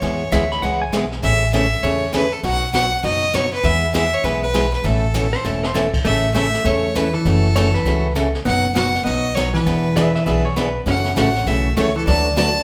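A clear, earthy fiddle carries the melody up front from the first moment of this cheerful western swing excerpt, joined at once by a bright, full-bodied picked acoustic guitar, a woody, thumpy pizzicato upright bass, and a brushed jazz kit sitting in the background with dark cymbals, a high-tuned snare and a boomy kick. The tempo is a brisk 199 BPM in 4/4 with a swung eighth-note feel, centered in A major. A clean, compressed lap steel guitar slides in briefly at 0.3 seconds, then returns at 5.3 seconds just as a short drum fill arrives. From 6.0 seconds a dark, clean hollow-body jazz guitar adds a second line in a lower range. The harmony moves through colorful chords such as Amaj7, F#m7 and E7 before landing on D6. The band sounds like it is playing live together in one room, with a moderate large studio reverb giving the ensemble an open, lively space.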